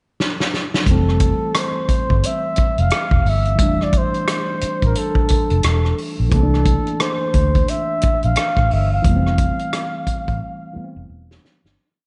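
A breathy, whispered flugelhorn carries the melody from 0.9 s, its mellow tone, soft attack and vibrato shaping intimate, song-like motifs high above the band. This is a warm, soulful piece of neo-soul R&B in F major at 88 BPM, with a swung sixteenth-note feel that sits easily in 4/4. An unplugged acoustic drum kit played with bundle sticks opens with a fill at 0.2 s, then settles into a laid-back groove of hi-hat, punchy kick, rim click and medium-tuned snare with ghost notes, sitting up front with a rolled-off top. A dark, foam-muted fingered electric bass adds a round, laid-back line with muted ghost notes, while a worn, barky tine electric piano, slightly out of tune and heard through its built-in speakers, holds rootless chords with grace notes. The harmony moves from Fmaj9 to C13 and back to Fmaj9, and a lush hall reverb gives the mix a dreamy, soaked quality before a final drum fill and a fade-out close the piece at 11.8 s.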